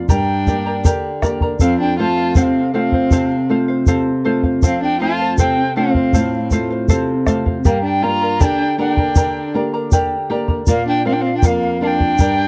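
A bright, shimmering charango and a dark, up-front flamenco guitar open this wistful, earthy Andean folk excerpt, both fingerpicked, the guitar's fresh strings carrying an audible finger squeak. At 0.1 seconds the rest of the ensemble joins: a large quena takes the melody with a reedy, pure tone, soft attack and vibrato, set at a slight distance, while a single bowed violin plays a smooth, even second line in its lower register. A round bombo sits prominently up front, with a grainy egg shaker tucked far beneath it, both heard in a small room. The tune moves at 79 BPM in a straight 2/4, its harmony turning from G minor to F, back to G minor, and on to B-flat. The sound is that of a dry, close 1970s-style studio recording with light reverb, and the passage is cut from a longer piece.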